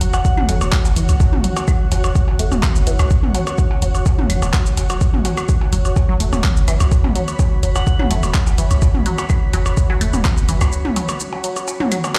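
A big, cavernous reverb fills this cool, sparse minimal techno fragment at 126 BPM in a straight 4/4, as if heard on a large sound system in a bare room. An overdriven, deep electronic kick sits up front beside a punchy sine sub bass with a pitch-drop attack, and both the bass and a juicy, squelchy resonant blip pluck pump against the sidechain. The pluck stays in the background, treated with phaser and dub echo, while a bright granular cloud pad drifts and evolves with its own reverb. A layered garage drum kit of handclaps, hi-hat and shaker carries gritty overdrive, and tape-toned electronic percussion blips, toms and claves scatter through delay. A soft, pure FM bell with a warbling vintage quality touches in briefly at the start and again around 7.8 seconds, colored by chorus, phaser, 12-bit sampler grit and delay. The kick drops out at 10.3 seconds and the bass at 10.7 seconds, opening a short break before the fragment cuts off.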